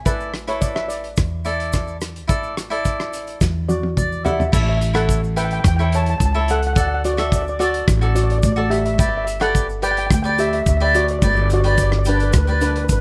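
A shimmering lead steel pan, played with medium rubber sticks for a dark, smooth tone, carries the melody up front in this festive, sunny calypso excerpt in a straight 4/4. Crisp, picked cavaquinho and a woody, thumpy gut-string upright bass played pizzicato sit close alongside it. A loose indie drum kit with dark cymbals and a tight kick, plus a grainy tube shaker in the background, share a small, fairly dry room, and a drum fill from 3.4 seconds, joined by a cavaquinho fill at 3.7, leads from the opening Asus4 into a new section moving through A, D and G from 4.5 seconds.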